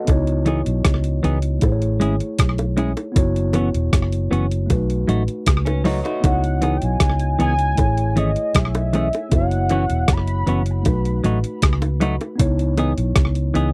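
A mellow tine electric piano opens this lovers rock reggae excerpt, heard through its built-in speakers, before a round, foam-muted fingered bass and a gated 80s drum machine enter up front with a thumpy, overdriven kick, hi-hat and rim click carrying a slapback echo. High-tuned bongos struck with hard hands sit in the background, while a clean, compressed electric guitar plays dark stabs over a looping progression that moves from C#m9 through Amaj7 and F#7sus4 to B7. Around 5.7 seconds, a slightly broken-up guitar through a small old amp adds a brief picked arpeggio. At 6.3 seconds, a velvety synth lead built from detuned sawtooth and triangle voices takes the melody, sustained and smooth with vibrato, chorus and tape echo. The dry, close 1970s-style studio sound gives the longing, bittersweet mood an intimate, unhurried feel.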